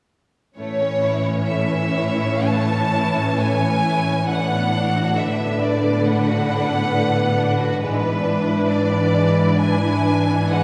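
Classical music for string orchestra, this slow romantic movement unfolds at 60-70 BPM in 4/4, with a serene mood and a freely breathing rubato in A major. Two violin sections enter at 0.6 seconds: the first, lush and up front, carries the melody with focused vibrato, while the second supports it with a rich inner line lower down. The viola section fills out the accompaniment with an expressive, warm tone, shaping its bowed phrases with portamento. Beneath them, the cello section holds the bass with a clear, present sound. The harmony moves from A to Bm7/A and then E7/G#, a fragment cut from a longer piece that ends at 10.6 seconds. A wet reverb suggesting a church or concert hall surrounds the ensemble in a spacious glow.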